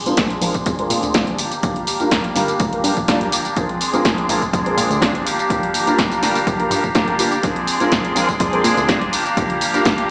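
A punchy analog drum machine sits up front with a dry snare, hi-hat and tambourine, all pumping with sidechain, over a dry electronic kick in this joyful, funky filtered disco house excerpt at 124 BPM in Bb mixolydian, with a filter sweep running through its full 10.1 seconds. A twangy, clean picked electric guitar riff and bright, intense bowed strings holding sustained chords with vibrato play alongside a warm, short-sustained grand piano with phaser, all pumping and low-pass filtered as Bb9 and Gm7 alternate. Underneath, a mellow, wave-folded analog bass plucks in the background, and the whole mix carries a large studio reverb with the character of a big sound system in a bare room heard through a small speaker.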